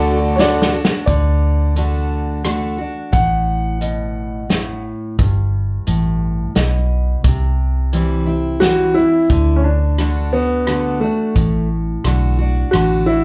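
A woody upright piano carries the solo through this sunny, nostalgic honky-tonk excerpt in a straight 3/4 at 88 BPM in D mixolydian, over a full-bodied picked jumbo acoustic guitar with finger squeak, a dark, round, foam-muted fingered electric bass, and a natural country drum kit with a punchy kick that opens with a fill at 0.4 seconds, while a mellow tonewheel organ with slow rotary and key click and a bright, twangy, barely audible pedal steel with volume swells drop out after the first second, all set back in a studio reverb as the chords move from D to G at 5.2 seconds, then to C, and home to D.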